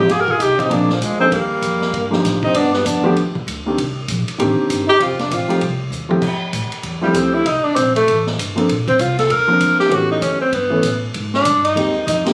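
A swinging 4/4 pulse drives this warm small-group jazz clip, where a breathy, whispered tenor saxophone carries the melody up front with vibrato and scooped notes, a clear trombone adds a second line until 5.6 s, a concert grand piano with deep bass and short sustain accompanies, a woody pizzicato upright bass holds the low end, and a vintage drum kit with dark cymbals and a punchy kick plays a fill at 5.9 s, captured on a phone in a studio room with light reverb.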